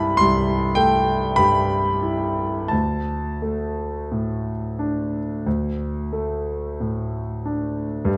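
The rhythm moves in a slow 4/4, somewhere between 41 and 55 BPM, with a rubato feel that lets the pulse stretch and give. This is a classical romantic nocturne for solo piano, nostalgic and serene in mood, heard as a brief fragment cut from a longer piece. A concert grand carries the whole performance from 0.0 to 8.2 seconds, spanning C2 to C6. Its tone is clear and natural, with a deep bass, and it sits up front in the mix. The harmony opens on Am7/C and moves to D5 at 2.7 seconds. A moderate recital hall reverb of about 1.5 seconds surrounds the instrument, and the production leans dark.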